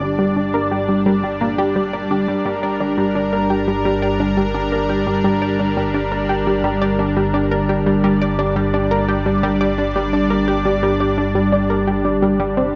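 A lush unison pad sits up front in this expansive, hypnotic stretch of ambient, sequencer-driven space music, holding thick, detuned chorused chords on G minor across the full 12.8 seconds. Alongside it, an analog pluck repeats a riff at 86 BPM in a straight 4/4, its round, bright attack colored by chorus and tape echo and ending at 12.6 seconds. A low analog drone anchors everything on a single G1, evolving with pulse-width movement and a folded, sine-rooted body. Faintly, a breathy, wind-like tuned noise texture drifts in at 0.1 seconds, dark and barely audible. The echo-heavy mix is bathed in a wet echo chamber reverb, giving this cut from a longer piece a floating, spacious sound.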